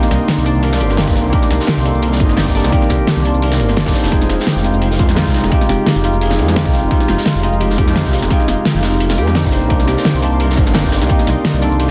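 A menacing, detuned saw bass sits up front with saturated, filter-swelling weight, anchoring this dreamy, lush liquid drum and bass piece at 172 BPM in F dorian, cut from a longer work. A worn, slightly out-of-tune tine electric piano with overdrive, phaser and dub echo moves between Cm9 and Fm9, while an airy, breathy pad with chorus and sidechain pumping and a bright, ringing concert harp playing arpeggios stay in the background. Drums blend a pop kit with fat snare and metallic hats, a gritty, rolled-off breakbeat kit, and a punchy electronic kick that enters at 1.1 s, all under light reverb in a dense, heavily limited modern master.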